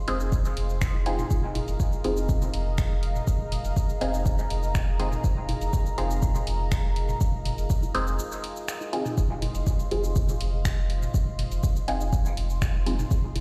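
A dark, detuned analog pad holds a sustained Fm7 chord under muted, phaser-washed dub chord stabs with dub echo, both pumping against the beat from the start of this cavernous, hypnotic dub techno cut at 122 BPM in F minor. A round sine sub bass and an up-front, tape-warm electronic kick drive the groove, while a deep house kit of cabasa, finger snaps and hi-hat trails dub echo and electronic bongos and toms sit in the background from 0.9 seconds. A brief break falls at 8.2 seconds, and the whole mix sounds as if played on a big sound system in a bare stone room.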